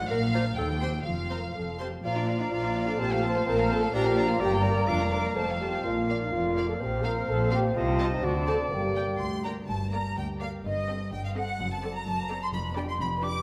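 A moderate scoring-stage reverb surrounds this playful, whimsical film cue, cut from a longer piece, moving at 126 BPM in a straight 2/4 and in Bb major before turning to G minor at 7.8 s. A clear violin section carries the melody over a ringing, thumb-plucked concert harp playing arpeggios, while a dark, woody cello section and a focused double bass section hold the bass, a lush viola section accompanies in the background, and a second violin section with a soft attack adds an expressive second line. Woodwinds and brass fill the middle: a mellow clarinet from 0.1 s, a bright oboe and an airy flute section from 2.0 s, and a roomy, distant bassoon from 2.1 s, with a loose French horn section sustaining chords until around 9.4 s.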